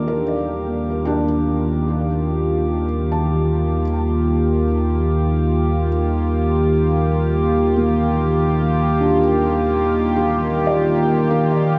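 In free time, this ambient passage, cut from a longer piece, floats weightless in Eb lydian, resting on a single Ebmaj9 chord for its 11.8 seconds. An up-front analog pad with a smooth, sawtooth-and-triangle tone and a sub octave holds sustained chords from Eb3 to Bb4, its slow attack and long release softened by chorus. Beneath it, a round, dark analog bass sustains a deep Eb2 through tube saturation. A felt-muted upright piano plays intimate arpeggios from Bb3 to A5, its thick felt and short sustain trailing into a diffuse ambient delay. High above, a glassy, ethereal glass harmonica fades in on a pure D6 across the whole passage. The parts sit in a vast, echoing cathedral reverb, where nothing rises above 7.6 kHz.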